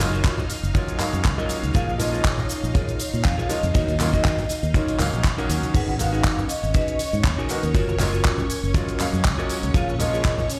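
Groovy and cosmic, this nu-disco excerpt moves at 120 BPM in 4/4 with a light 16th-note swing, cycling through F#maj7, A#m7, D#m7 and G#m7 over a tight, dry kick up front, a round, punchy fingered bass, and an overdriven, layered pop drum kit with cabasa, handclaps, crash and hi-hats, while soft-handed congas and tambourine sit in the background. A brilliant concert grand piano with short sustain and a lush, sawtooth string machine with ensemble chorus both pump with sidechain compression, and a dark, scooped clean guitar riff glimmers through chorus and delay. At 1.7 seconds a smooth vibraphone melody enters with fast motor vibrato and vintage 12-bit sampler grit, all heard through the stony reverb of a bare room played on a big sound system.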